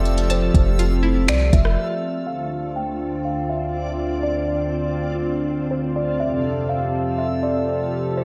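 Hazy and spacious, this atmospheric cloud-rap fragment in D minor moves at 122 BPM in 4/4 with a half-time feel, soaked in a lush hall reverb that gives the whole mix a dreamy, digital ambience. A detuned sawtooth pad sits up front, holding smooth, soft-attacked chords with a long release, treated with chorus, sidechain pumping and a low-pass filter, while a reversed, granular texture of bright triangle tones swells alongside it throughout. A deep, boomy 808-style bass with a sine core and fast attack anchors the opening alongside a tape-warm R&B drum kit of soft kick, smooth hats, finger snaps and rim clicks, re-recorded in a large room; both drop out at 1.8 seconds, opening a brief break. Just after the start, a woody, hollow-bodied kalimba carries the ringing melody through delay and a low-pass filter, while a twangy, warbling resonator pluck, present from the very beginning, plays vintage-toned arpeggios in the background with chorus, phaser and delay until 2.3 seconds. 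From there a filter sweep washes over the remainder as the harmony moves from Fmaj7 to Dm7, returning to Fmaj7 at 6.2 seconds.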